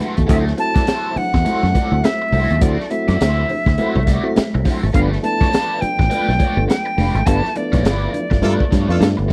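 A strutting, playful funk cut at 103 BPM opens on a crunchy breakbeat kit with a high-tuned snare and gritty, rolled-off top, a dark overdriven garage guitar run through wah and phaser, mellow tonewheel organ stabs turning on a slow rotary speaker, and ringing congas set in the background. A punchy, foam-muted fingered bass arrives at 0.2 s, and at 0.3 s a distant silver concert flute carries the tongued, vibrato-laced melody over very quiet sustained organ chords, moving from D9 to G9. A present horn section adds a brief second line at 8.4 s within a band accent, all captured as a dry, close 1970s-style small-room recording with vinyl crackle.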